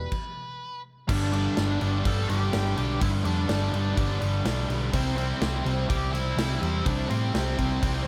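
Lightly reverberant and roomy, this brooding, angsty slice of quiet-loud alternative rock opens on a stop, with a round, up-front hollow-body short-scale electric bass and a dark octave-fuzz lead guitar carrying the melody over a big acoustic rock kit with punchy kick, medium-tuned snare and bright crash cymbals. At 1.1 s three riff guitars enter together: a biting, double-tracked overdriven guitar and a second overdriven electric guitar sitting in the background, plus a very quiet, compressed fuzz guitar. The harmony moves from G to C at 4.9 s.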